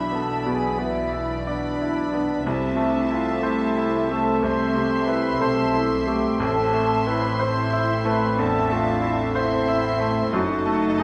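Unfolding in a rubato twelve-eight, this brooding, tragic classical fragment, cut from a longer piece, sets a bright, brilliant concert grand piano up front with the melody, reaching down into deep bass, joined high above by an intimate chamber violin section also carrying the melody, played sul tasto with vibrato. A mellow solo clarinet, a distant, pure-toned small flute group and a rich studio violin section weave second lines, while a woody, very quiet viola section accompanies and a dark French horn section holds sustained chords in the background. A double bass section and a floating cello section carry the bass, and a wet recital hall reverb surrounds the ensemble as the harmony settles on a diminished chord at 10.3 s.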